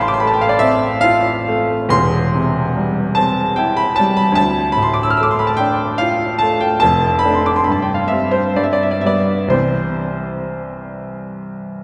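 In a 3/4 metre with a rubato feel, drifting between 58 and 75 BPM, this short excerpt from a longer romantic nocturne in C major unfolds with a nostalgic, serene mood. A solo baby grand piano, clear, natural and up front, plays throughout the 11.8 seconds, spanning from E1 to F6 as its harmony moves from F/A through Dm and G to settle on C at 9.5 seconds. A wet church reverb with a long 3.1-second decay surrounds the instrument, and the piano is tuned slightly low to A4 = 438 Hz.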